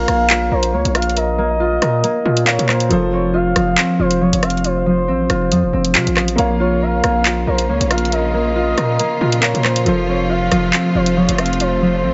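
Cold and menacing, this drill cut from a longer hip hop piece moves at 138 BPM with a half-time feel in Bb harmonic minor, swinging between Bb minor and F chords. An up-front electronic drill kit with bright hats, handclaps and rim clicks drives the groove from 0.1 seconds, while a heavy, saturated 808-style bass with a sine core, noise layer and fast, decaying attack snarls underneath with distortion. A thumb-plucked concert harp rings out arpeggios through tape echo, and a dark, worn baby grand piano sits in the background, boxy and intimate, its action noise audible. Above them a smooth, gliding sine lead carries a second line with portamento, vibrato, chorus and tape echo. At 6.4 seconds a clear, lush bowed string section enters with sustained chords, its focused ensemble tone and smooth top adding weight, all set in a light studio reverb.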